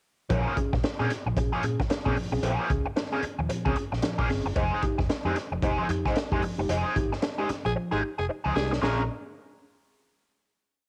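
A swung sixteenth-note funk groove in four drives this short, sly piece, built on a gritty breakbeat kit with a punchy kick, a high-tuned snare, ghost notes and a rolled-off top that sits up front. A round, foam-muted fingered bass anchors its syncopated riff on the downbeat, slipping in muted ghost notes and chromatic approach notes, while an overdriven guitar scratches out sixteenth-note rhythm through a wah pedal. A worn, slightly out-of-tune tine electric piano adds percussive two-handed stabs as the harmony moves from Bbm7 to Fm7 and back. The band hits accents while the drums play a fill, and a raspy, growling tenor saxophone enters at 7.7 seconds to punch at the phrase end before everyone lands on a final chord at 8.8 seconds that rings out to 10.9 seconds. The guitar, keys and sax carry a cassette-tape grain and plate reverb, and the whole piece has the lo-fi feel of a home recording on cassette with a light room reverb.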